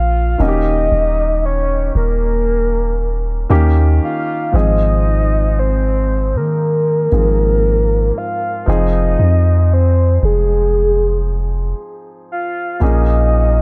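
A slow, straight 4/4 pulse carries this moody, sensual contemporary R&B excerpt, where a long, deep, sine-toned 808-style bass sits up front beneath an intimate grand piano with audible action noise and long sustain, while a soft, round, octave-layered synth lead with a sub octave, vibrato, chorus, phaser and digital delay sings the melody over chords moving from Eb7 through Ab6 and Fm7 to Bbm7, all in a dark production with small room reverb.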